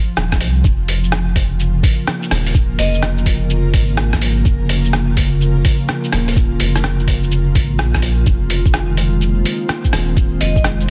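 A swung 126 BPM future garage groove in 4/4 rides a muffled, thumpy electronic kick and a pitched-down, tape-soaked sampler kit of hi-hat, rim click and shaker, with soft clipping on the snare. Beneath it a deep, round dub sub bass pumps against the sidechain, while a slow-blooming, detuned ethereal pad with ensemble chorus, built-in reverb and 12-bit sampler grit breathes through chords moving from F7(no3) to Bbm and later Fm7. The melancholic, ghostly mood is pierced twice by a bright, ringing vibraphone note with delay, at 2.8 and 10.4 seconds, all set under a dense, heavily limited master with vinyl crackle in this excerpt from a longer piece.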